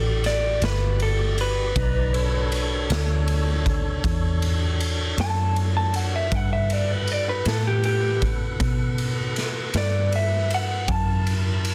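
Slow blues in 12/8 with a smoky, soulful mood, cut from a longer piece, where a clean electric guitar through a small old amp carries a picked, slightly broken-up, lo-fi solo over a tonewheel organ holding fat sustained chords through a slow rotary speaker. A dark, foam-muted vintage bass sits round and punchy up front, while a raw garage drum kit of kick, snare and ride enters at 0.2 seconds, gritty and saturated with a boomy kick and a pumping stone-room sound. The changes move from a rootless Em7 through Bm7 and Gmaj7 to an F#7#9, all in a small room with a dense, heavily limited modern master.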